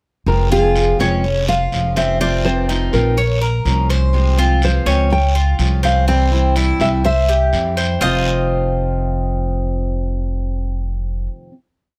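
Close, detailed microphones and light reverb give this short, complete Cuban son and guajira piece an intimate, present sound. It moves at 124 BPM in a straight 4/4, with a sultry, nostalgic mood over a minor progression from Fm through F7, Bbm and C before settling on a final F7 chord at 8.0 seconds. A dark, full-bodied nylon-string guitar carries a fingerpicked, motif-based melody of call phrases, set in plate reverb. Beneath it, a woody, up-front upright bass plays a pizzicato tumbao that anticipates the chords. A picked steel-string acoustic guitar with an auditorium tone strums with muted slaps, and a bright, metallic Cuban tres weaves an arpeggiated guajeo on its double strings from 0.5 seconds. A raspy guiro adds long and short scrapes until 8.1 seconds, after which the guitars, tres and bass hold the closing chord.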